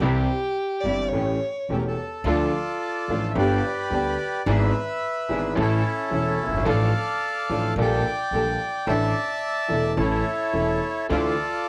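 A bowed violin with vibrato and portamento opens this melancholic, sultry rubato tango excerpt up front, over a brilliant grand piano with deep bass, a dark string section playing soft-attack stabs in the background and a woody pizzicato upright bass, before a reedy bandoneon takes the melody at 1.7 seconds and the violin falls away at 1.9 seconds, with cassette tape colouring every part but the bass in a home recording with modest booth ambience.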